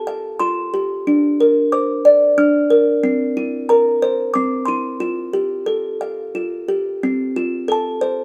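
A delicate, tinkling music box plays alone throughout this short fragment of a children's piece in F major. Its large, mellow tone sits close and up front, soft yet full, and it moves in a rubato 3/4 around 91 BPM through gentle add9 chords, a C7 and a closing F chord at 7.0 seconds. The mood is tender and innocent, set in a moderate stone-room reverb.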